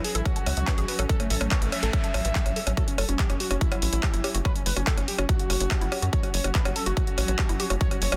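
Psychedelic trance at 143 BPM in F# phrygian, intense and psychedelic, this excerpt drives a punchy, tape-warm kick and a tight, sawtooth sequencer bass under a techno kit of handclaps, warm hats and percussion blips, while a gritty, screaming overdriven lead with phaser and dub echo carries the melody over a swarming, detuned drone and a woody, wave-folded pluck riff with chorus and tape echo set in the background, these three pumping to the sidechain, with a filter sweep on the synth arpeggio throughout and a faint noise sweep from 1.5 to 2.8 seconds in a dense, heavily limited mix.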